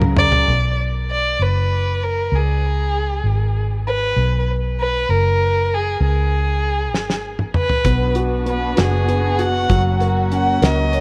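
Swaying and romantic, this six-eight pop ballad excerpt unfolds in a gentle 6/8 lilt, colored throughout by the worn, warbling pitch drift of old cassette tape, light reverb and small room ambience. An expressive solo violin carries the melody from 0.2 seconds, its bowed line up front with vibrato, soft attacks and portamento, trailed by tape echo. Beneath it, a vintage muted fingered electric bass holds the low end for the whole passage, dark, round and foam-muted with an amped, forward presence. A damped 70s drum kit opens with a fill, returns with another at 6.9 seconds, and then settles in, sounding dry, airy and polished with a fat snare and tight kick. A grand piano with long sustain and a distant, woody symphonic string section sound briefly at the opening, then return at 7.9 seconds as the harmony moves from B minor to F#, the strings lending a lush, shadowed bed beneath the violin.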